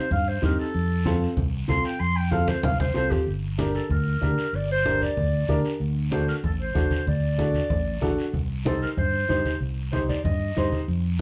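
A warm, roomy clarinet in classical style carries the melody up front in this passionate, driving cumbia fragment, over a dark, round fingered electric bass and low-tuned, thick-skinned congas played with hard hands. A raspy, dry guiro sits quietly in the mix while a woody, slightly detuned upright piano with a boxy, long-sustaining tone fills in the chords. A percussion fill at 2.3 s leads into a second section at 3.3 s, all set in a studio reverb heard from further back in the room.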